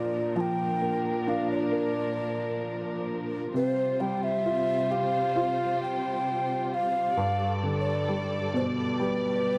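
This dry, close recording has a 1970s studio character and a light touch of reverb, capturing a short fragment cut from a longer pop piece. At a slow 66 BPM in a straight 4/4, the mood is emotional and heartfelt. A breathy alto ocarina carries the melody, its clay tone shaded with vibrato and tongued notes and given a slapback echo. An upright piano sits up front with a woody, natural sound and long sustain, providing the accompaniment. Beneath them, a studio string section holds lush, bowed chords with vibrato, portamento and a smooth top. All three parts play together across the 9.6 seconds, moving through Bb, Csus4 and Gadd9.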